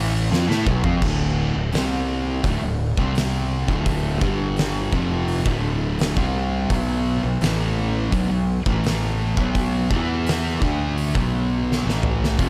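Stoner and doom metal with a brooding, heavy mood at a straight 84 BPM in 4/4, this short section cut from a longer piece sets two distorted, picked fuzz guitars grinding out a riff over a fuzzed, overdriven fingered bass reaching down to D1, while an oversized low-tuned drum kit with a punchy kick, fat snare, dark cymbals and a gritty, saturated sound in a bright stone room enters with a fill at 0.3 seconds and closes with another at 11.7 seconds, all in a dark, dry production moving through power chords such as D5, C5 and B5 with a brief D minor.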